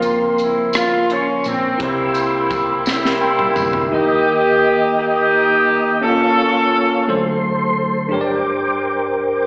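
A slow, reverent yet jubilant gospel passage in 6/8 at 57 BPM opens with an up-front, roomy horn section carrying the melody over bell-like tine electric piano, a soft, flute-like tonewheel organ with slow rotary speaker and chorus vibrato, a round hollow-body bass in the background, a crisp fusion drum kit with a high-tuned snare and punchy kick, and a jingly tambourine. The drums and electric piano both play a fill from 2.9 to 3.9 seconds, after which the bass, drums and tambourine stop, leaving horns, piano and organ over chords that move from Eb toward Gm, with the horns dropping out at 7.4 seconds. The whole is heard as a live gig through a venue's PA with lush hall reverb and an AM radio tint, and slapback echo sits on the horns and electric piano.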